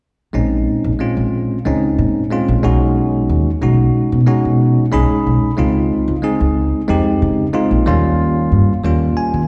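Nocturnal and intense, this short excerpt of jazz moves in a straight 4/4 feel, caught live through a venue's sound system with the reverb of a recital hall and a small-room ambience around it. A tine electric piano with a bell-like, bright tone carries the accompaniment from 0.3 seconds, its clean sound given a slapback echo and placed up front. Beside it, a pizzicato upright bass on steel strings sounds woody and close, anchoring the low end throughout. The electric piano breaks into fills at 4.6 and 8.8 seconds. The harmony passes through Bbm11, B69, Dbmaj9 and Eb9, giving the passage a dusky, searching colour.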